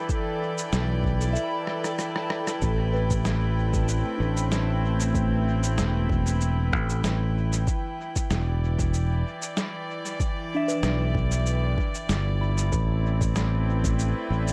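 A growly, punchy fingered electric bass sits up front from 0.7 s in this hazy, meditative ambient dub piece, under reedy gut-string chamber strings holding sustained chords, a soft FM synth bell arpeggiating in the background through chorus, phaser and dub echo, a dreamy reversed swelling texture that opens the piece and returns at 12.7 s, an overdriven soft electronic kick, and a muffled, pitched-down shaker, snare and rim click that add a drum fill just before the Am9 arrives at 2.6 s.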